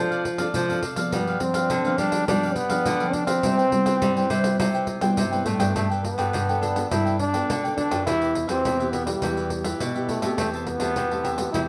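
A straight 4/4 samba and choro groove at 104 BPM moves along joyfully, driven by a jingly pandeiro played close with hard hands while a crisp, picked cavaquinho and a bright, fingerpicked nylon-string guitar with audible finger squeak fill in the harmony, anchored by a second nylon-string guitar thumb-plucking a warm classical bass line. Up front, a clear, punchy trombone carries the solo melody with jazz-style vibrato and forceful attack, moving from C major into G major at 5.8 s over chords that pass through Cmaj7, Gadd9 and Em. The band plays live together in a moderate stone room whose 1.1-second reverb gives this lively fragment of a longer piece its stone-room ambience.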